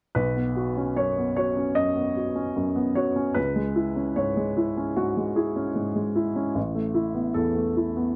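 A solo upright piano opens at 0.1 s, its woody, polished tone heard up front and close, with short sustain and little room around it. This melancholic, wistful neoclassical minimalist piece moves at 75 BPM in 4/4 with a rubato feel, ranging from A1 to D#5 as the harmony passes from Badd9 to C#m and then Asus2. The detailed, dry recording runs just past 8 seconds, cut from a longer piece.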